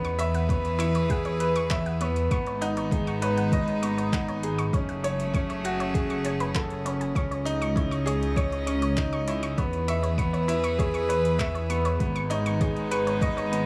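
A string quartet, a bright concert grand piano, a detuned saw bass, an analog pluck and a deep house drum kit all begin together at the opening of this melancholic, intimate piano-and-strings electronica excerpt in a straight four. The quartet holds sustained chords with light vibrato, an airy bow and a nasal, gut-string tone, one player per line, and its chords pump against the kick. The piano plays a riff up front, brilliant yet worn, with audible action noise and a touch of digital delay. Beneath it the saw bass rumbles dark and saturated, its detuned voices beating as it pumps in time. In the background the pluck runs arpeggios through chorus and delay, while the electronic kick enters at 0.5 seconds, deep and tape-warm under the drum kit's handclaps and metallic hats. The chords move from E to G#m and on through F#madd9 and C#madd9 before returning, all in a small room with light reverb.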